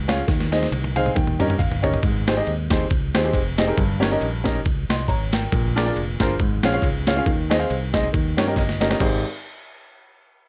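An up-front upright piano carries this short, hopeful cut from a longer uptempo gospel piece, its woody tone carrying audible action noise that gives it an intimate, natural presence as it plays accompaniment from the low register up to C6. The groove moves at 138 BPM in 4/4 with a swung eighth-note feel in Ab major, and the harmony lifts through chords such as Abmaj7, Eb7/G, Bb7 and Db/Ab before landing back on Abmaj7. A sampler-style breakbeat drum kit sits equally forward, compressed and gritty with a thumpy kick, a medium-tuned snare, a tape-warm character, and crash, ride and toms, opening with a fill at 0.3 seconds. Beneath them, a fingered electric bass holds down the bottom end with a dark, round, direct-amped sound, a little lower in the mix. The piano adds a fill of its own around 8.1 seconds, meeting a second drum fill before the final chord arrives at 9.0 seconds, all set in a light reverb that keeps the uplifting mood close.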